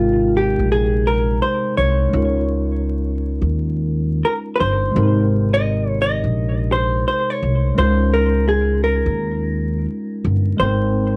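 A dark, clean hollow-body jazz guitar carries the melody up front, its picked, compressed notes moving between F4 and Eb5 through an analog delay. This dreamy, nostalgic lo-fi hip hop piece in Ab major sits at 85 BPM in 4/4, with a 63% swing on the sixteenths and tuning set slightly low at A4 = 438 Hz. Underneath, a tine electric piano plays warm, clean accompaniment through its built-in speakers, its tone carrying a cassette tape color. A woody, pizzicato upright bass with steel strings stays close in the mix, holding the low end between G1 and Eb2. The harmony moves gently between Abmaj9 and Db69 across this brief 11.2-second passage cut from a longer piece, with all three parts playing throughout. A light reverb, a homemade cassette sound and a bed of vinyl crackle give the whole recording a hazy, intimate feel.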